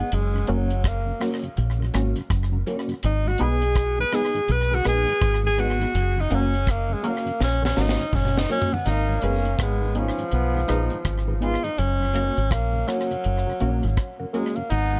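Hypnotic and serious, this roots reggae passage is cut from a longer piece and rides a swung sixteenth-note feel, with a punchy, up-front tenor saxophone with vibrato and dub echo carrying the solo melody over a round, foam-muted fingered bass and a dry drum kit with a high-tuned snare, tight kick, rim clicks, toms and tape echo. In the background sit a clean, fingered electric guitar with ensemble chorus and dub echo, a mellow tonewheel organ turning through a slow rotary speaker, and nasal, sawtooth chord stabs with a phaser, all over chords moving between F# and G#m. A drum fill from 7.4 to 8.9 seconds leads into the second section, where a bright, close-miked trombone with vibrato and dub echo enters at 8.9 seconds in an echo-heavy mix with little reverb.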